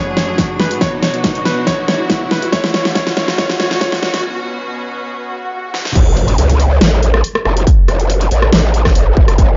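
A brilliant grand piano melody, filtered and touched with tape echo, opens this heavy, chaotic 140 BPM half-time wobble dubstep fragment in F# minor over biting, pumping background strings, a building riser, an overdriven drum kit with a huge snare and bright hats, and a distorted electronic kick, until a break at 4.2 seconds and a swell give way at 6.0 seconds to the drop, where a growling, saturated, chorused wobble bass enters up front alongside an impact.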